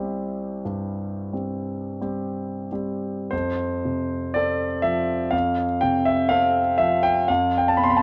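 A warm concert grand piano plays alone through this short, serene and nostalgic romantic nocturne in F major, cut from a longer piece. The tempo drifts between 41 and 63 BPM in a free, rubato 4/4, and the playing spans from deep bass notes up into the upper register. The piano sits up front and intimate, its polished tone carrying long sustain, with the soft clatter of its action audible beneath the notes. The harmony opens on C, settles onto F at 3.3 seconds, and leans into G7/F near 7.3 seconds. Light reverb surrounds the sound, and the whole recording carries the character of worn, old cassette tape, its pitch gently warbling and drifting.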